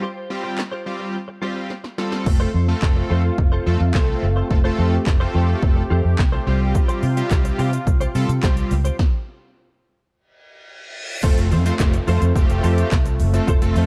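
A punchy analog drum machine drives this upbeat, summery dance-pop excerpt at 107 BPM in F major. A fat sawtooth polysynth pumps alongside a clean, direct-recorded electric guitar riff, then a round, foam-muted bass enters at 2.3 seconds beneath a smooth, slow-attack analog pad. A stop arrives at 9.0 seconds, and a reverse cymbal and downlifter enter at 10.5 seconds to lead back in at 11.2 seconds, all in a dark, dry production.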